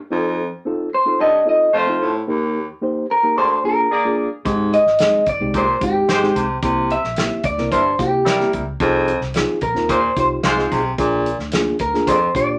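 A moderate studio ambience frames this danceable, uplifting 1960s-style soul excerpt, where a raspy, gritty baritone saxophone riff and a reedy electric piano open together, a slightly broken-up electric guitar from a small old amp carries the up-front melody with harmonic tremolo, a mellow jazz-style horn section with light vibrato adds a second line, and a dark, foam-muted fingered bass and a natural country drum kit of hi-hat, punchy kick and snare join at 4.5 seconds.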